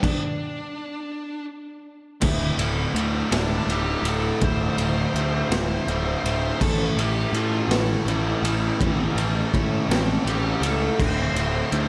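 Restless and bittersweet, this excerpt of quiet-loud alternative rock moves at 55 BPM in a straight 6/8, opening with a stop where a dark, high-gain lead guitar with slapback echo plays over a gritty, saturated garage drum kit with a boomy kick, up front. At 2.2 seconds the band enters for a lead guitar solo over Dsus2 and A: a bright, high-gain distorted guitar and an overdriven semi-hollow guitar sit in the background on the riff, both with slapback echo, while a fuzzy, overdriven picked bass pushes up front. A lush hall reverb gives the whole a big arena sound.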